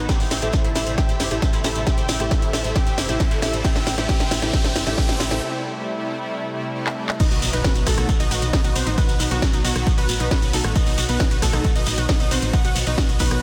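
Dense and heavily limited with light reverb, this euphoric, soaring uplifting trance passage runs at 135 BPM in 4/4, tuned to A4 = 436 Hz. A huge, detuned supersaw carries the melody through a low-pass filter sweep during the build-up, joined by a brilliant concert grand piano on a second line, a thick, nasal pad sustaining the chords, a wave-folded pluck arpeggio with delay and a round, dark FM bass, each pumping under the sidechain, while an up-front punchy kick, a techno kit with cracking snare and metallic hats, and a grainy, distant shekere drive the rhythm. A very quiet riser enters at 2.5 s, drum fills lead into a short break at 5.4 s, and the drop lands on B at 7.2 s with an electronic impact.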